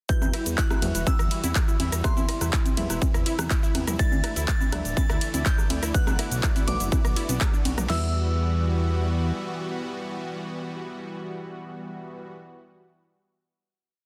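In a dense, heavily limited modern master with a digital ambience, this driving, dreamy progressive house piece runs at 123 BPM in E minor. It opens on a drop: an overdriven big-room dance drum kit pounds a four-on-the-floor kick, a huge snare and crash with programmed hats, shaker, ride, rim and claps, while a tape-toned analog drum machine adds a tribal loop of congas, rim and toms. A fat, saturated sawtooth bass gallops in sixteenths under a lush supersaw pad, a punchy detuned unison pluck cycles a 3-step sequence that drifts against the bar, and a dark, nasal chord stab and a glassy FM bell tracing arch-shaped motifs sit in the background, each of these pumping with sidechain; at 4.9 seconds a faint reversed granular texture holds a high note, the drums and pluck stop near 8 seconds, and the pad, bell and stabs ring on a final Emadd9 until 12.3 seconds.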